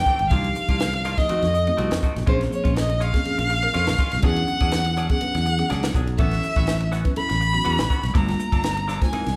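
A wet, large studio reverb surrounds this short cut from a longer electric jazz fusion piece, with the band playing live in one room and a slick, soaring mood over a lightly swung 4/4. A rich, focused bowed violin carries the melody with vibrato, over a growly, sustaining fretless bass, a mellow tine electric piano colored by phaser, and a bright, twangy, compressed electric guitar adding picked stabs. A crisp, polished drum kit with dark cymbals, a high-tuned snare and a punchy kick drives the groove through chords such as Cm11, F7b9, E13 and A69.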